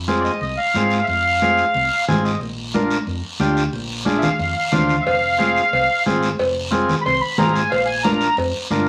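Fiery and passionate, this short cut from a longer cumbia moves at a brisk 181 BPM in a straight 4/4, rooted in F dorian and alternating between F minor and B-flat chords. A sweet, reedy accordion with light tremolo tuning carries the melody up front, playing a solo that drops out briefly before returning at 4.2 seconds. Beneath it, a buzzy, clean vintage combo organ supplies accompaniment and slips in a short fill around 1.9 seconds, while a dark, round, punchy fingered electric bass anchors the low end. Congas with a ringing, high-tuned tone and soft hands drive the groove alongside a raspy, close guiro, and cowbell and timbales with a metal-shell ring join at 5.1 seconds. The whole mix sits in a wet studio reverb with vinyl crackle, giving it an aged, band-limited character around the accordion.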